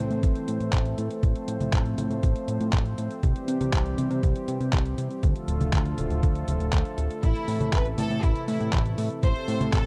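A thumpy electronic kick sits up front in this nostalgic, melodramatic italo disco excerpt, alongside a detuned 8-bit drum machine of cabasa, congas, handclaps and hi-hat, and a fat, saturated sawtooth bass with a plucky filter. A smooth, warbling vintage pad with chorus holds sustained chords over a progression moving from Am through F/A, C and Dm. At 7.2 seconds a clear, biting studio violin section enters with light vibrato, adding intensity to the close, dry 1970s-style sound.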